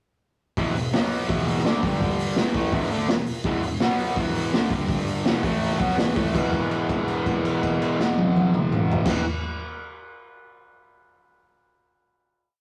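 A bright, double-tracked fuzz guitar and a crunchy breakbeat drum kit kick in together at 0.6 seconds, pounding out a raw, swaggering garage rock power-chord riff that circles around E5 with stabs at B5, G5 and A5. The drums sit up front with a punchy kick, a high-tuned snare and dark cymbals, their gritty, rolled-off sound filling a big rock groove. At 6.3 seconds the guitar lands on a final held chord that rings out in the small, rough rehearsal room until just past 9 seconds.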